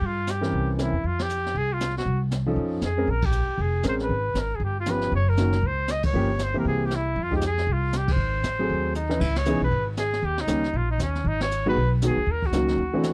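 A dry, close 1970s-style studio sound in a small room frames this smoky, swinging stretch of fast small-group swing and bop, cut from a longer piece. Up front, a vintage-toned trumpet carries the melody with vibrato over a woody pizzicato upright bass with steel strings, while a clear upright piano joins at 0.4 s and the brush kit sits mid-forward with dark cymbals, a high-tuned snare, a boomy kick and a rolled-off top. The band hits repeated accents together, and a drum fill at 8.9 s leads into a new section at 9.2 s, where the harmony moves to a fresh key centre.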